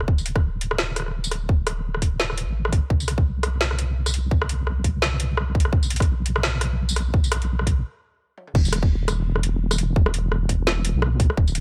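A swung half-time drum and bass groove carries this heavy, spacious fragment, with a tight, up-front electronic kick anchoring a layered kit of woody snare, metallic hi-hats, rim clicks, tambourine, toms and crash cymbal, all sounding filtered and dry. Beneath it, a deep, dark wobble bass built from detuned sawtooth and sine tones sustains with a compressed, chorus-thickened weight. The build-up halts in a stop at 7.8 seconds, a drum fill arrives at 8.4 seconds, and the drop lands at 8.6 seconds.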